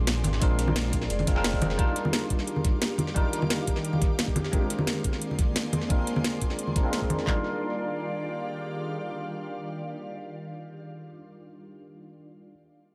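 A knocking, up-front drum and bass kick layered with handclaps drives this dreamy, lush liquid drum and bass excerpt at 175 BPM in Eb major, alongside a second electronic kit whose cracking snare and metallic hats carry tape echo until 7.2 seconds. Beneath them sits a gritty, compressed sampler-style soul kit, re-recorded in a large room and set in the background with high-pass filtering on its snare, hats and room, while soft-handed congas add a bright, vintage, band-limited layer through tape echo. A bell-like tine electric piano plays clean accompaniment through phaser, analog delay and a low-pass filter sweep across the opening 7.3 seconds, moving between Bb9 and Ebmaj9 chords. An ethereal, detuned pad with slow attack and long release holds sustained chords through ensemble chorus, phaser and built-in reverb, while a deep sine sub bass with its octave sounds only briefly at the start. 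The echo-heavy mix sits in light reverb, and the piece is cut from a longer track.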